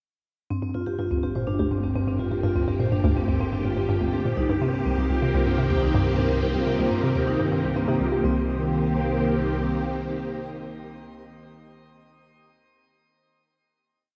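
A hollow, bouncy square-wave pluck loops a low 12-step riff that drifts against the bar at 124 BPM in C dorian, joined by a metallic, ringing vibraphone arpeggio loop, a swirling phased string machine fading in on Gmadd9 and Cm7 chords, a dark analog drone bass and a breathy, wind-like noise texture that also fades in, all in this hypnotic, expansive piece of sequencer-driven ambient space music, soaked in lush hall reverb with a cassette tape tint, until the strings hold the final chord, ringing on to 11.4 seconds.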